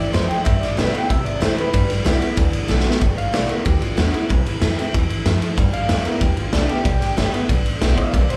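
Retro and rollicking, this short rockabilly clip cut from a longer piece drives along at 188 BPM in a straight 4/4, centred on G mixolydian and caught as a live gig heard through the venue's PA, with club reverb and lossy compression artefacts. A twangy, slightly broken-up electric guitar through a small old amp carries the melody, opening with a clean solo over the first 3.0 seconds, its tone bathed in plate reverb, slapback echo and tape echo. Beneath it, a bright, full-bodied steel-string acoustic guitar with fresh strings is picked as accompaniment, sharing the plate reverb and slapback echo. A woody, thumpy upright bass with gut strings is played pizzicato, while a raw garage drum kit sits up front with a punchy kick, medium-tuned snare and ride cymbal, its saturated, gritty sound rolled off on top and ringing in a bright, pumping stone room. A drum fill from 2.7 to 3.0 seconds launches the second section, where the harmony moves between G6 and C chords.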